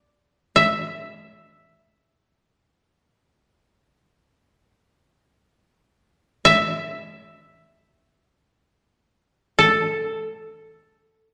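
Japanese traditional chamber music, calm and austere, this brief passage from a longer piece features a solo koto played with fingerpicks, its bright, woody tone sitting up front between A4 and E5 while a recital hall reverb lends the space a lingering resonance.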